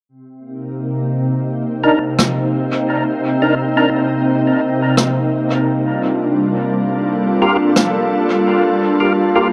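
Ambient dub with a deep, meditative mood, moving at an unhurried pace with a light swing, this cut from a longer piece opens on a soft, organ-like pad holding sustained chords that shift from Cm9 to Gm7 at 5.7 seconds, its pure, warbling tone thickened by ensemble chorus and a filter sweep running throughout. At 1.8 seconds a percussive tonewheel organ enters with stabs, fat and lightly overdriven, carrying key click, chorus vibrato and a slow rotary speaker, roughened by vintage sampler grit, darkened by a low-pass filter and trailed by dub echo. A natural, acoustic rim click joins at 2.2 seconds, played with brushes and sitting up front, its hits also repeating through dub echo until it stops at 7.9 seconds. The mix is echo-heavy and bathed in a moderate spring reverb, leaving a long, hazy tail around the pad and organ.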